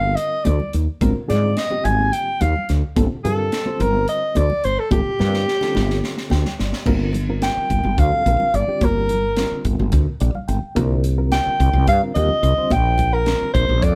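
Electric jazz fusion in G minor at 215 BPM in a driving, slick 7/8, with a mellow soprano saxophone carrying the melody up front over a woody, growly fretless bass, a reedy, slightly out-of-tune electric piano with fast tremolo that adds fills at 6.0 and 9.9 seconds, high-tuned congas in the background, and a crisp fusion drum kit with dark cymbals and a tight kick that plays a fill from 5.2 seconds, all in a live room with light reverb, as chords move from Gm7 through Ab6 and Gm11 to Cm9 and Bb69 in this excerpt from a longer piece.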